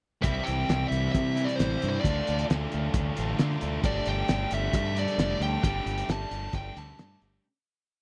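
A dry, close recording in the manner of a 1970s studio, with little reverb, frames this short indie rock piece, cool and restless in mood, moving at 133 BPM in a straight 4/4. A cloth-damped, thuddy drum kit sets a pop groove from a small room, its fat snare and tight kick muffled and gritty with a rolled-off top. A growling fingered bass sits up front with overdrive and a punchy, driving eighth-note line, while two rhythm guitars ring out chords on a riff: one thick and fuzzy, the other crunchy and overdriven, bathed in lush chorus and slapback echo. Over them a compressed fuzz lead guitar carries a hook-based melody between C5 and A5, its tone distorted yet warm with a touch of slapback. The whole piece plays as a pre-chorus over C, Dm and Gsus2, fading out from 5.6 seconds to its close at 7.4 seconds.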